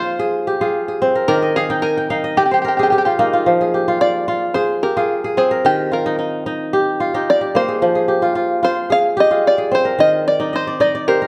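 A ringing, crisp kora fingerpicks arpeggios up front in this hypnotic, reflective West African traditional excerpt, breaking into fills from 1.3 to 3.5 seconds and again at 10.4 seconds. Beside it, a mellow, plunky open-back banjo carries the fingerpicked melody with a twangy, percussive bite. Both play through the whole passage over a steady, straight four-beat pulse that alternates between Fm and Eb, set in a moderate recital-hall reverb.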